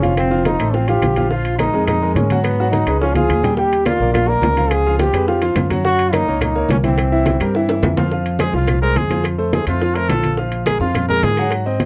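A fast, straight 4/4 salsa groove at 212 BPM in F minor drives this fiery, passionate clip from a longer piece. It rests on growly pizzicato upright bass up front, polished baby grand piano, low-tuned congas in the background, tight high-tuned bongos, ringing metal-shell timbales and very quiet woody claves, with drum fills along the way. A bright, roomy trombone carries the melody up front until 7.8 seconds, then a punchy trumpet with light vibrato takes a solo from 8.4 seconds, all in a dry, close 1970s-style studio sound.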